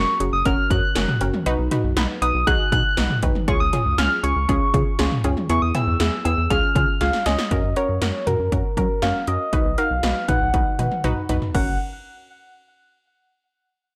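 The recording sounds dry and gritty, with a digital ambience around the parts, and it comes as a short fragment cut from a longer piece. This is wistful yet upbeat synth-pop at 119 BPM in a straight 4/4, set in F# major and moving through F#, B, C#, E and back to F#. Up front, a soft, round FM lead with a keys-like strike carries the melody, its tones decaying under chorus, phaser and vibrato. Beneath it, a warbling, lo-fi sawtooth pluck with a noise layer and filter sweep supplies the accompaniment, while a rubbery, hollow square-wave bass adds a bouncy, resonant low end. The 80s-style electronic drums enter at 0.2 seconds with a punchy kick, metallic hats, cowbell, crash, and a gated-reverb snare and toms, and they drive drum fills at 7.0 and 10.5 seconds into each new section.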